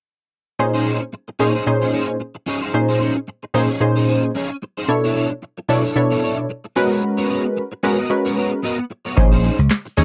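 A dry, close studio sound frames this late-night early-eighties boogie funk excerpt, opening at 0.6 seconds with a punchy, detuned sawtooth polysynth comp with a plucky filter and chorus, alongside a slightly broken-up picked electric guitar riff sitting lower in the mix under an ensemble chorus, moving through minor eleventh chords. At 9.2 seconds the groove arrives in full: a booming analog drum machine with a deep kick, crisp snare, handclaps and metallic hats, a punchy amped slap bass up front, and a grainy tube shaker tucked in the background, all riding a light sixteenth-note swing.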